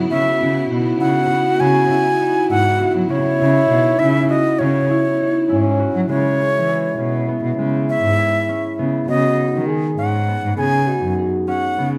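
Opening on a lush bed of sustained, bowed symphonic strings in the background, ringing thumb-plucked harp arpeggios and a dark, woody solo cello bass, this restless, pensive contemporary chamber piece in 5/8 at 200 BPM (eighths) in C# minor soon carries a breathy, bright flute melody up front over a mellow French horn second line, with the strings dropping out at 6.1 s as the C#m11 harmony gives way to C#m7 and B6, all set in a moderate recital hall reverb and captured by close, detailed microphones.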